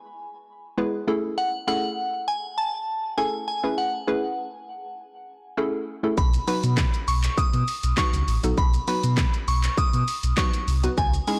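A straight 4/4 pulse at 100 BPM drives this summery, euphoric dance-pop fragment cut from a longer piece: a glassy, crystalline FM synth bell carries the melody with chorus, tremolo and dub echo over a hollow, detuned square-wave pluck pumping with sidechain as the chords move from E to Amaj7, until at 6.2 seconds a deep sine sub bass with octave and a punchy, layered electronic pop kit of kick, fat snare, bright hi-hat, handclaps and shaker arrive on B, set in a blown-out, overdriven recording with light reverb.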